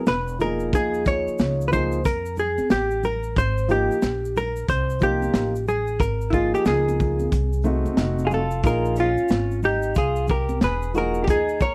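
A dry, close 1970s-style studio sound frames this cool, mellow jazz-hop excerpt at 91 BPM with a swung sixteenth-note feel: a clean, picked hollow-body jazz guitar carries the melody up front over woody pizzicato upright bass, a gritty, saturated breakbeat kit with a punchy kick and rolled-off top, a dark baby grand piano with long sustain, and background egg shaker and congas, while from 8.2 s a slightly broken-up, lo-fi electric guitar through a small old amp adds a second line as the chords move from Eb7sus4 through Abmaj9 and F7b9 to Bbm9.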